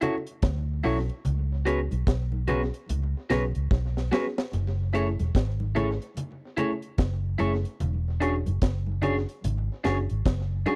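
A twangy, slightly broken-up electric guitar through a small old amp cuts through with picked stabs in the D4 to C#5 range, sitting up front in this bittersweet, longing lovers rock reggae passage at 73 BPM in F# minor, cut from a longer piece. Alongside it, a deep reggae drum kit with a high-tuned snare, tight kick and hi-hat sounds dry and dark with a rolled-off top, its tape echo adding depth, and a drum fill arrives at 3.7 seconds. A vintage muted fingered electric bass enters at 0.4 seconds, round, punchy and foam-muted, holding the low end between E1 and D2. A mellow FM electric piano with chorus plays soft, decaying accompaniment with a fast attack and a noise layer, while ringing congas with tape echo sit in the background. The 16th-note swing gives a relaxed lilt as the harmony moves from Dmaj9 through C#7sus4 and F#m7 to E13, all captured in a close, intimate 1970s-style studio sound with small room reverb.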